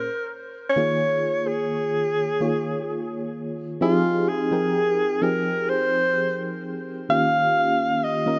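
A mellow alto saxophone carries the melody up front, its smooth-topped jazz tone shaped by vibrato and scooped notes and trailed by a touch of delay, ranging from F4 to F5. Beneath it, an FM electric piano with tremolo supplies the accompaniment across the full 8.4 seconds, full-bodied and dark with a fast attack, decaying notes and a noise layer, spanning Eb3 to G5. This dreamy, romantic R&B fragment, cut from a longer piece, moves at a slow 64 BPM in a straight 4/4, tuned slightly sharp to A4 = 441 Hz. The harmony opens on Eb9sus4, shifts to Fm7 as a new section begins at 3.8 seconds, and settles on Eb9 at 7.1 seconds. Light reverb and a small room ambience frame the two parts, and the sound stays soft at the top, with nothing above 7.7 kHz.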